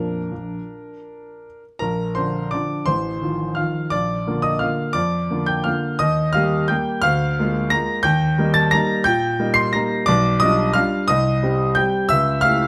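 A classical piano waltz in Bb major, this short passage cut from a longer piece has a playful, elegant mood and a flexible rubato feel in 3/4, moving at roughly 152-185 BPM. A grand piano plays alone throughout its 12.7 seconds, spanning from A1 up to C7. Its tone is warm and present, sitting up front with a long sustain. The harmony begins on Bb, passes through F7/A and Eb, and later leans toward G7/B and Cm before closing on A7/C#. Close, detailed microphones capture the instrument, and a light reverb adds a touch of space around it.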